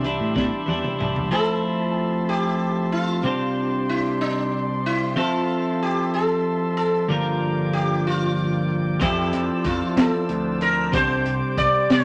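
Set in a moderate studio ambience, this dark, hypnotic psychedelic rock excerpt, cut from a longer piece, rolls along in a slow 6/8. A buzzing, shimmering sitar carries the melody up front, its plectrum-plucked notes ringing with sympathetic strings, while a bright, twangy twelve-string electric guitar plays a clean, compressed riff beneath it. A vintage combo organ holds mellow sustained chords with light vibrato throughout, moving through Cadd9, Fmaj7, Csus2 and Gm7. A crunchy breakbeat drum kit with a punchy kick, high-tuned snare and gritty, saturated tone plays a brief fill to close the opening before dropping out at 1.3 seconds, along with a growling, overdriven picked bass. Both return at 9.0 seconds to thicken the closing stretch.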